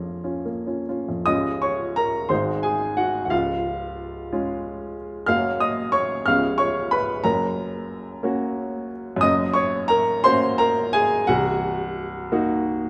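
A romantic classical character piece for solo upright piano in Db major, moving at 60 BPM in 6/8 with uneven beats and free rubato, its mood bittersweet yet stormy. The woody, vintage-toned piano sits up front with a smooth, short-sustaining sound, spanning from C1 up to F6 inside a moderate reverb that lingers for 1.8 seconds. After a brief opening on Bbm, the music turns at 1.3 seconds through Db, Ab7 and Gb harmonies, darkening at 11.3 seconds onto a Cm7b5 chord as this fragment of a longer piece breaks off.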